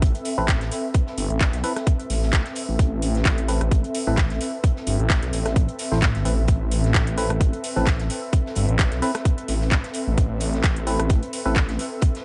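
The excerpt opens on a tight electronic kick pushed up front and a thick, swirling detuned saw bass, saturated and phased, its sidechain pumping giving this swaggering, bouncy bass house groove at 130 BPM a heaving lilt, with a filter sweep running across the whole 12.2 seconds. A house drum kit adds handclaps, rim clicks and metallic hats, while a very quiet crunchy breakbeat kit sits underneath with gritty hi-hat and a medium-tuned snare, its top rolled off. An airy, breathy pad with a nasal edge hovers throughout on a chorused, pumping Amadd9 chord in A minor. From 0.4 seconds a hollow, organ-like stab punctuates the groove, mellow and wave-folded, carried on chorus, phaser and digital delay. The 16th-note swing and slightly sharp tuning keep the whole thing loose and strutting.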